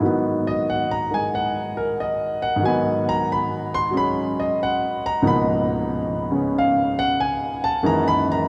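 A warm, up-front grand piano plays alone from the first moment, carrying a sophisticated, playful solo jazz line at 92 BPM in 4/4 with a swung eighth-note feel. Its harmony moves from G#m7 to C#13 at 5.2 seconds and F#13 at 7.8 seconds, spanning C#2 to B#5. A long, wet cathedral reverb surrounds the playing in this short 8.5-second excerpt cut from a longer piece.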